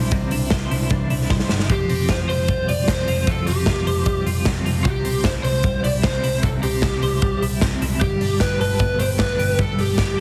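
Breezy and youthful, this short cut from a longer jangly indie pop piece moves at 152 BPM in C major, with a bright, twangy twelve-string electric guitar playing tremolo-tinged arpeggios over a round, foam-muted vintage bass and a punchy, up-front rock drum kit in a stone-room sound. A picked steel-string acoustic guitar with audible finger squeak plays only until 1.7 seconds, when a drum fill gives way to an overdriven lead guitar melody through a small cranked amp. The chords shift from Cadd9 to Fsus2, C and Gadd9 under light small-room reverb and a heavily compressed, radio-like sheen.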